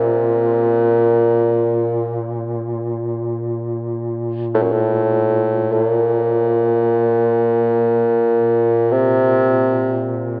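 Caucasian folk lament in free time, longing and solemn, cut from a longer piece: an up-front, vintage-toned bassoon sings a low classical-style melody between Gb2 and C3 until 10.2 seconds, while a distant, roomy duduk sustains a mellow Bb2 drone with vibrato, soft attacks and scooped notes until 10.4 seconds, the pair set in a wet cathedral reverb with a 5.4-second decay.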